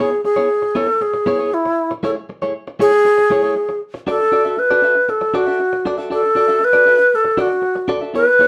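Sultry and driving, this short disco excerpt cut from a longer piece moves in a straight four-beat feel. An alto flute carries the melody from the start, close-miked and up front, its airy, warm tone marked by vibrato, tongued notes and an unsteady quality. Beneath it, a warm, clean electric guitar recorded direct plays picked, compressed accompaniment at a much lower level, ranging more broadly than the flute's narrow span. The harmony moves from C#m7 to Amaj7 at 1.8 seconds, then settles on Bm7 when a new section begins at 4.1 seconds. Both parts play throughout, captured as a band performing live in one room with a moderate studio ambience.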